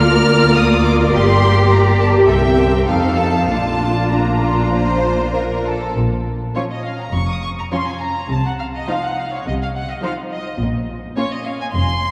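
Cheerful and graceful, this quick classical-period movement for string orchestra moves at 103 BPM in 4/4 with a rubato feel, beginning in Bb major and turning to Bb minor at 6.0 s, in a passage cut from a longer piece. A clear, intense first violin section carries the melody high in its range with vibrato, sounding distant in the hall. A smooth second violin section with a studio character plays a supporting line, while a rich, even viola section fills in the accompaniment, and both of these inner parts stop at 11.3 s. Beneath them, a lush cello section and a focused, up-front double bass section carry the bowed bass line through to 12.1 s. A dark production and a long, wet church reverb of 3.2 s surround the ensemble with a spacious glow.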